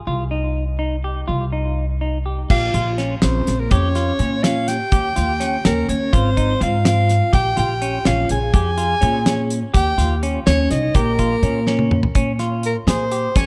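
A woody, thumpy upright bass with gut strings opens this brooding, intricate progressive instrumental. It is joined almost at once by a clean semi-hollow electric guitar playing fingered arpeggios through spring reverb and analog delay. At 2.5 seconds the band fills out: a close-miked soprano saxophone carries the melody up front with vibrato, a soft attack and a breathy jazz tone, a vibraphone with medium mallets adds a metallic, ringing second line with fast motor vibrato, and a damped 70s drum kit enters with a fat snare, tight kick and bright cymbals. The music moves in an uneven 5/8 metre with a straight feel, and its harmony shifts through chords such as Bbm, Eb7 and Ab. A drum fill starting at 11.7 seconds leads into a short saxophone solo over Bbm9 at 12.2 seconds, with the vibraphone stopping at 11.9 seconds during the fill, all set in a light studio reverb and cut from a longer piece.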